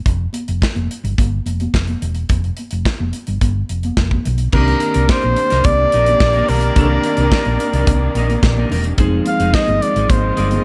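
A straight 4/4 disco groove at 108 BPM in C minor opens with a punchy, up-front acoustic drum kit, a dark, round hollow-body fingered bass and high-tuned, damped congas tucked in the background, setting a driving, glamorous mood. At 4.5 seconds the harmony arrives on Cm9 before moving to Fm7, as a close-miked flugelhorn with vibrato and scooped notes takes the melody up front, joined by a mellow tine electric piano, a clean picked electric guitar and a bright, distant string section holding sustained chords. From 5.7 seconds a warm horn section adds smooth-topped stabs with light vibrato, all in a dry mix as this cut from a longer piece plays on.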